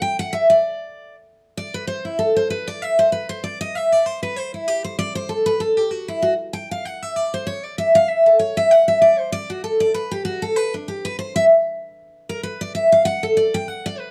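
A picked steel-string acoustic guitar opens this bluegrass passage alone, and it carries the whole 14.1 seconds as a solo. The mood is driving and joyful, moving at a brisk 193 BPM in 4/4 with a light swing on the eighth notes. The dreadnought guitar sounds bright and full-bodied, sitting up front in the mix, with its lines ranging from D4 up to G5. A short opening phrase gives way at 1.3 seconds to a longer run of the same repeating melodic material, which returns once more near the close. A moderate studio reverb adds a touch of room around the instrument, and the recording is cut from a longer piece.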